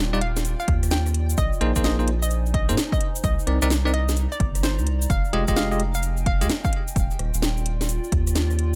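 This moody, bouncy two-step garage excerpt opens on a round, soft dub sub bass and a warbling, nostalgic pad that pumps beneath chorus and phaser, as bell-like electric piano stabs with digital delay move through rich ninth chords. A grainy egg shaker, a hollow, detuned square pluck melody with chorus and delay, and an overdriven house kit with cracking snare and metallic hats arrive almost at once, joined at 0.7 seconds by a punchy electronic kick. The swung groove sits in a dry, close mix, with the piano stabs dropping out near 6.5 seconds and the pluck near 6.8 seconds while the bass, pad, shaker and drums carry on.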